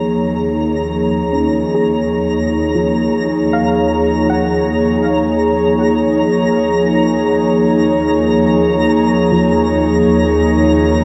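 Ambient in Eb minor at 60 BPM in 3/4, serene and melancholic, built on a single Ebm7 chord with an airy, breathy pad holding sustained chords up front under chorus and a filter sweep. A soft, round pluck sits in the background with dark arpeggios through subtle chorus and diffuse ambient delay, while a lush, bowed cello section holds a smooth, vibrato-rich Eb2 bass and a twinkling granular texture sparkles on Bb5 with an octave-up shimmer. The pluck, cellos and texture all fade in across the 11 seconds, and the whole sits in a lush hall reverb with a cassette tape character.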